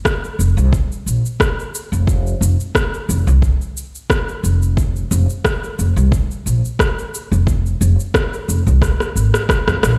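Re-recorded through a big sound system in a bare room with a large studio reverb, this earthy organic downtempo fragment in F minor at 89 BPM with a light swing sets an up-front, deep, overdriven electronic kick and a layered, overdriven rim click and shaker beneath a growly, woody pizzicato upright bass that pumps with sidechain compression from 0.4 seconds, before a drum fill arrives at 8.8 seconds.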